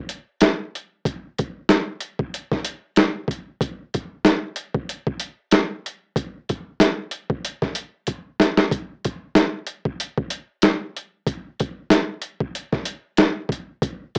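Hip hop at 94 BPM in 4/4 with a light 16th-note swing, this soulful excerpt consists solely of a boom bap sampler-style drum kit of kick, snare and hi-hat, sitting up front from 0.1 s to 14.2 s. The kit sounds compressed, pitched down and gritty, with a thumpy kick, a medium-tuned snare and a tape-warm character, and a drum fill arrives at 8.1 s. A short, wet small-room reverb and a homespun cassette quality with small-speaker coloring give the whole recording a lo-fi intimacy.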